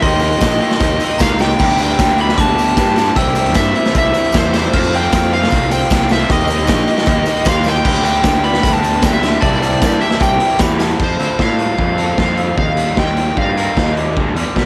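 An indie rock excerpt, wistful and carefree, built on a raw garage drum kit that sits up front, gritty and saturated, with a punchy kick, a medium-tuned snare and a pumping stone room, under a double-tracked lo-fi garage guitar riff and a growly fuzz bass. A bright, smooth overdriven lead guitar carries the melody until 13.9 seconds, while a sparkling bell-like glockenspiel with analog delay, a jingly tambourine and a dark, barely audible string-machine cello pad sit in the background through the first section. At 11.0 seconds those three drop away for a short second section driven by the band alone, all wrapped in the character of a home cassette recording with light reverb.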